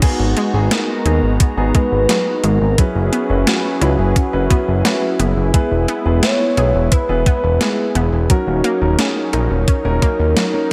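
A straight 4/4 pulse at 87 BPM opens this moody, cinematic synthwave passage in G# minor, driven by a thumpy, overdriven electronic kick sitting up front beside a clean 12-bit drum machine whose medium-tuned snare, hi-hat and crash are overdriven and bathed in gated reverb. A fat analog bass enters at 0.2 seconds, its thick, detuned sawtooth and triangle tone wave-folded, tube-saturated and shaped by a filter sweep. Carrying the melody is a velvety synth lead built from unison sawtooth and triangle waves, mellow and smooth with vibrato, chorus and delay. Behind it, a vintage, warbling pad holds sustained chords with lush chorus and sidechain pumping, while an analog pluck with a round, bright noise-layered tone spins arpeggios through chorus and digital delay, and a dark grand piano adds stabs with long sustain. The harmony moves through G#m7, F#7sus4, E and D#m7 under light reverb, and the passage is cut from a longer piece, ending at 10.7 seconds.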